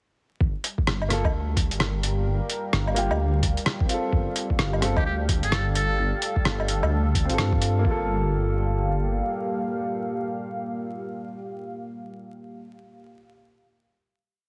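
A buzzy, metal-muted trumpet with light vibrato and scooped notes slips in at 5.0 s for a brief jazz-style phrase over this melancholic, ghostly future garage piece, where a muffled, overdriven two-step kick and a skittering, shuffled lo-fi kit of closed hi-hat, rim and low woodblock drive the groove beneath a rumbling detuned saw bass, woody upright piano stabs with 12-bit grit and tape echo, and a deep, slowly shifting ambient pad that carries the final chord from 7.8 s, all wrapped in crackling, heavily compressed radio-like sound.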